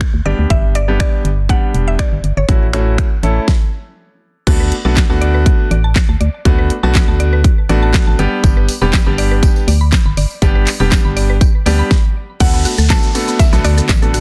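Dance-pop at 121 BPM in D major, this euphoric, summery excerpt rides a punchy, up-front electronic drum kit with a fat, softly clipped snare, finger snaps, handclaps and shaker over a hollow, dark, organ-like FM bass that pumps with the sidechain, while a clear grand piano plays the accompaniment. A woody, bright mallet-like synth pluck carries the melody with chorus and delay, and from 4.5 seconds a second woody, round pluck in the background adds arpeggios, joined later by a jingly, very quiet tambourine. Brief stops punctuate the groove, and at 12.4 seconds the melody returns over a background downlifter, with an ethereal, airy, mellow pad entering at 13.2 seconds, all inside a dense, heavily limited modern master with digital ambience.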